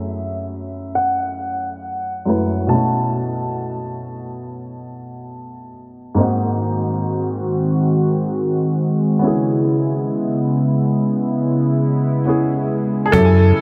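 Moody, sensual contemporary R&B at 69 BPM with a gentle sixteenth-note swing, where an intimate baby grand carries a clear, long-sustaining melody over a second, short-sustaining piano accompaniment, both showing natural action noise and subtle chorus, the lead also touched by tape echo. The harmony opens on F#m7 and B7sus4, the melody drops out at 5.7 seconds, and at 6.2 seconds a smooth, detuned sawtooth analog pad with warm chorus settles in as the chords move to G#7 and then C#m7. At 13.1 seconds, a punchy, dark FM bass and a woody, compressed cajon played with soft hands slip in as the melody returns, all inside a dreamy, low-pass-filtered mix steeped in huge ambient reverb and a filter sweep.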